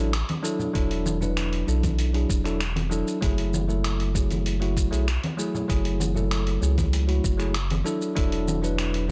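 Sunset chillout, smooth and wistful, with a bell-like tine electric piano with analog delay up front over a round, deep analog bass, moving from E9sus4 to F#m9 while a dusty soul sampler-style kit of finger snaps, hi-hat and shaker and a gritty, thumpy electronic kick entering at 0.8 s mix with soft-handed vintage congas in a dry hardware recording cut from a longer piece.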